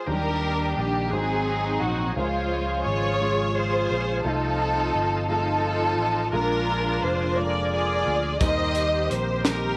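A slow gospel sway in 6/8 at 58 BPM, counted in dotted quarters, carries this soulful, hopeful excerpt in Eb major, cut from a longer piece. Up front, a lush studio string section carries the melody with smooth, even bowing and vibrato, moving between Ab3 and Eb5. Behind it, a concert grand piano with deep bass supplies accompaniment, and a bright tonewheel organ holds sustained chords, lightly overdriven with chorus vibrato, key click and a slow rotary speaker. A dark, round fingered electric bass anchors the low end from F1 to Eb2. The harmony moves from Ebmaj7 through Ab7, Dbmaj7, F7 and Bb7 before settling on Eb6 at 8.4 seconds, where a punchy, gritty fusion drum kit with a high-tuned snare and pumping room sound enters briefly on hi-hat, kick and snare. Light studio reverb gives the whole a polished, intimate feel.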